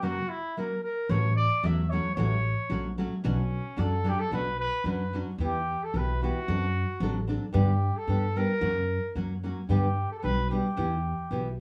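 Mexican folk mariachi in B minor at 112 BPM in 2/4, this short cut from a longer piece feels dramatic and passionate, recorded as a band playing live together in a small room with moderate reverb. A mellow, distant classical-style trumpet carries the solo melody up front, over a full-bodied fingerpicked nylon-string guitar in a classical vein. A woody pizzicato upright bass with steel strings joins at 1.1 s, with harmony moving from Bmadd9 toward Em, D7/F#, G and F#.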